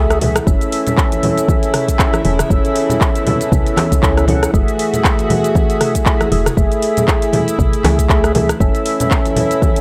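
Afro house with a spiritual, earthy mood, cut from a longer piece: a fat, lightly overdriven tonewheel organ sits up front with key click, chorus vibrato and a slow rotary speaker plus analog delay on its stabs, over floating sul tasto strings holding soft-attack chords and a round, woody FM bass, all three carrying sidechain pumping beneath a deep electronic kick, while an afro-pop kit of cabasa, handclaps, metallic hats, rim click and toms joins ringing, low-tuned congas played with hard hands, the whole gritty hardware recording staying dry as the chords move from A to F#m9 at 4.5 seconds and back to A.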